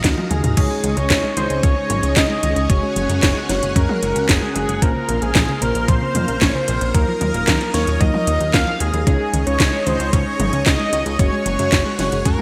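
Italo disco at 113 BPM in Db major, danceable and romantic, cut from a longer piece: a thick, detuned sawtooth unison lead with vibrato sings the melody up front through digital delay over a lush string machine ensemble, a punchy background unison pluck playing delayed arpeggios, a glossy chorused pulse-wave synth bass, a thumpy sampler-style electronic kick, and an overdriven house kit with cracking snare, metallic hats, handclaps and gated reverb that plays a drum fill from 0.2 to 0.6 seconds, when a clean tine electric piano joins with stabs as the chords move from Ebmadd9 through Dbsus2, Gbsus2 and Bbmadd9 in a bright 1980s-style digital production.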